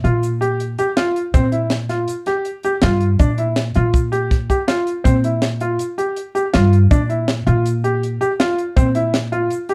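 A dark, warm production with light reverb frames this short, intricate and bright progressive instrumental, moving at 162 BPM in a straight 5/4 that alternates between Bb5 and a rootless C7sus4/Bb. Up front, a clear concert grand piano with short sustain plays arpeggios touched by slapback echo, a woody, thumpy pizzicato upright bass holds the low end, and a tight funk drum kit sounds dry and polished with a high-tuned snare. A grainy, close egg shaker joins at 0.2 s in the background.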